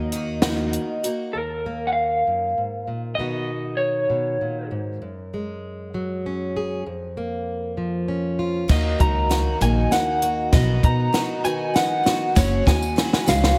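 A slightly broken-up electric guitar through a small old amp carries the melody up front, its tremolo-shaded tone giving this wistful, bittersweet indie folk excerpt in 6/8 a gently aching voice. The opening moments bring in a bright, boxy twelve-string acoustic with a shimmering octave-doubled sparkle and a touch of finger squeak, a woody, dark pizzicato upright bass, and a compact cocktail drum kit with a punchy kick, high-tuned snare and dark cymbals. At 1.3 seconds a fingerpicked plugged-in steel-string acoustic takes over the accompaniment, its slapback echo framing the electric melody as the chords move from Ebm through B and Gbsus2 to Bbm/F. From 8.7 seconds the arrangement builds as the twelve-string, bass and drums return, with a drum fill driving the build-up to the end. A jingly tambourine sits close and dry in the background from 12.4 seconds, while a lush hall reverb gives the mix a big arena sound.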